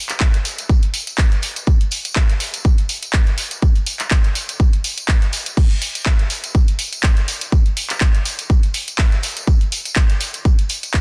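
Sensual and groovy, this short house cut rides a steady 123 BPM in 4/4, with a 55% swing on the sixteenths that gives the beat a loose, rolling feel. A punchy electronic kick sits up front from 0.2 seconds, layered and produced with a tape-warm edge, as if re-recorded in a small room. The house drum kit enters at 0.1 seconds with crash cymbal, handclaps, hi-hat and tambourine, and its hats, percussion and cymbals pump through sidechain compression. Beneath it all, a very quiet acoustic tambourine part, with the character of a tube shaker and group handclap in a small room, adds a faint texture through 11.0 seconds. The mix is dry, with little reverb, and is pressed into a dense, heavily limited modern master.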